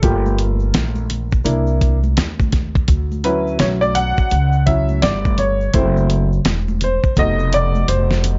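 Jazz-hop with a nocturnal, cool mood and a swung sixteenth-note feel, this short cut features an upright piano that is woody, slightly detuned and vintage, taking a smooth solo from start to finish over chords moving from Gm7 through Dmaj9 to F7#11. Up front beside it, a pizzicato upright bass with thumpy gut strings and a gritty, compressed sampler-style drum kit with a fat snare play throughout, with the drums closing on a fill at 7.2 seconds. Tube shaker and congas sit in the background, and the whole piece has a dark, small-room production.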